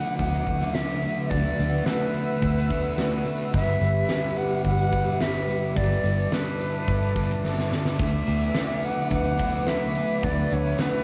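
A pure flute melody with vibrato opens this blissful, wistful shoegaze and dream pop excerpt, floating on plate reverb and tape echo over an up-front fuzz guitar riff and a very quiet, twangy clean guitar, while a moody, detuned sawtooth pad holds sustained chords around it. At 0.2 seconds a huge arena drum kit with a fat snare and punchy kick enters alongside a round, foam-muted bass and a faint jingly tambourine, and the drums play a fill at 7.4 seconds. The whole piece carries the character of a home cassette recording made in a small room.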